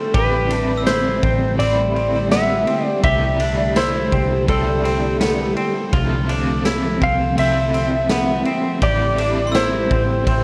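Through worn, warbling cassette tape with pitch drift and a small room's light reverb, this hazy, ethereal dream pop excerpt in A minor moves at 83 BPM, with a dark, compressed clean lap steel slide melody trailing delay over an overdriven semi-hollow guitar shimmering with tremolo and chorus, bright fingered electric guitar arpeggios in lush chorus and delay, mellow organ-string chords in the background, a round, foam-muted vintage bass, a gritty, punchy garage drum kit with kick, snare, ride and tambourine in a pumping stone room, and a very quiet sparkling glockenspiel that rings until 3.4 seconds and returns at 9.5 seconds.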